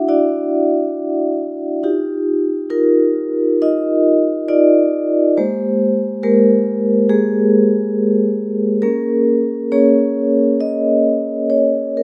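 Reflective and hypnotic, this short cut from a longer contemporary classical piece for solo vibraphone unfolds at 68 BPM in 4/4 with a free, rubato feel. Played with medium mallets across a range from Ab3 to F#5, the vibraphone sounds metallic, ringing and full, close-miked and up front, with a slow motor vibrato shimmering over dry, detailed tone and only a light reverb around it. The harmony drifts from Dadd9 through Ebmaj9 and Abmaj9 before settling on Bbm7 at 8.8 seconds.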